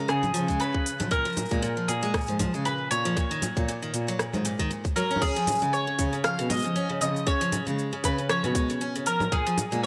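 Playful and hopeful, this folktronica excerpt in Db mixolydian moves at 117 BPM with a light 16th-note swing, as a bright, woody mandolin carries the melody up front over picked arpeggios from a full-bodied dreadnought acoustic guitar, both touched with digital delay, while a dark, bowed cello with vibrato holds the bass and a tape-warm electronic kit of congas, crisp hi-hats, rim clicks, shaker and crash is joined by a tight electronic kick that enters at 0.5 seconds, all within a light reverb.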